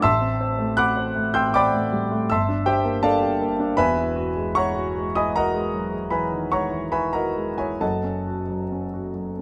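Dreamy and hazy, this short excerpt of impressionist classical solo piano drifts in a rubato 5/4 as a concert grand, heard up front and intimate with deep bass and audible action noise under light reverb, moves through Am7, Gm7, Eadd9 and Gbm6 across a range from E1 to G6.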